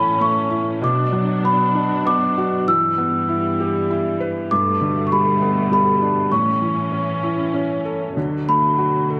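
Gentle and sleepy, this short excerpt of a children's lullaby sways in a rubato three, with a bell-like, sweet celesta singing the melody up front over a felt-muted upright piano's intimate, vintage accompaniment and a veiled, distant con sordino string section holding dark sustained chords, all set in a moderate scoring-stage reverb as the harmony drifts from A through Em and Gadd9 to settle on D6 at 8.2 seconds.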